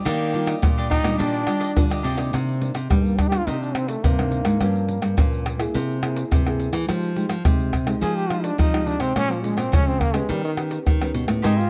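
Samba and choro in C minor at 106 BPM, this bittersweet, nostalgic excerpt sets a clear, close-miked trombone melody with vibrato and scooped notes over a full-bodied, fingerpicked nylon-string guitar and a thumb-plucked nylon-string bass guitar sitting warm in the background. A crisp, bright cavaquinho picks along from the start until 2.3 seconds and briefly returns at 11.4 seconds, while the trombone stretches into a jazz-style solo from 2.3 seconds. Up front, a dry, close tube shaker, pandeiro, tamborim and tight surdo drive the groove, all within a light reverb.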